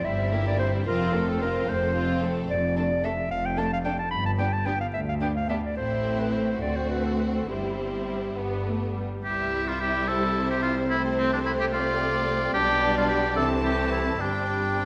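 A generous concert-hall reverb surrounds this spirited, graceful classical-period orchestral passage in a lilting, flexibly paced 6/8, cut from a longer movement. A violin section carries the melody with smooth, even vibrato while a second violin group adds an expressive inner line in the background, supported by lush violas, distant cellos, and an intense double bass section. A close-miked clarinet sings up front until 8.9 seconds, a clear, soft-edged oboe takes over the second line at 9.2 seconds, and a mellow, roomy bassoon joins the accompaniment at 10.1 seconds.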